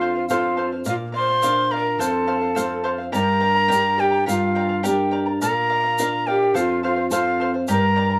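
Set in a dark production with moderate small-room reverb, this earthy, wistful Andean folk excerpt at 106 BPM in 2/4 puts an up-front, reedy quena on the melody over a breathy, distant second line from large pan pipes with vibrato and chiff, while a shimmering charango with double strings and a fingerpicked flamenco guitar, also up front, accompany through F, Bb and Gm chords, and a grainy, band-limited egg shaker sits quietly beneath from 0.3 seconds.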